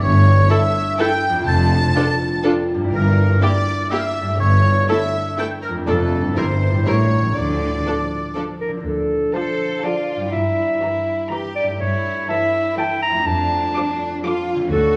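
Cinematic film cue with a playful, whimsical character and a sneaky, mischievous mood, set in D minor in a straight 3/4 at 122 BPM and cut from a longer piece. A lush violin section carries the expressive vibrato melody from 0.5 seconds, supported by a smooth second violin line, a warm viola accompaniment in the background, and a bowed low end from a focused, distant cello section and a rich double bass section. A ringing, fingerpicked concert harp spins arpeggios throughout, while a roomy oboe with light vibrato adds a second line until 8.4 seconds, handing the color over to an up-front clarinet with a soft attack from 8.6 seconds. The harmony circles tensely between dominant and diminished chords around D minor, giving the cue a tiptoeing, furtive quality. The sound sits on a moderate scoring stage reverb blended with a small room ambience.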